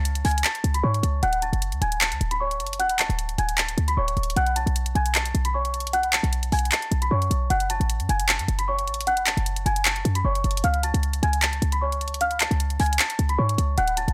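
A delicate, bell-like celesta, filtered and trailed by tape echo, opens this menacing, brooding trap excerpt in F# harmonic minor at 153 BPM in a half-time feel, sitting over a punchy, tight 808-style bass with a sine tone, a noise layer, a fast attack and a decaying tail. From 0.1 s an up-front electronic trap kit joins with handclaps and bright hats, while the harmony moves through C#5, D, B5, F#m and C# across two matching passages. The sound is dry and gritty, set in a digital ambience, with the sweet, airy celesta and the bass both placed up front.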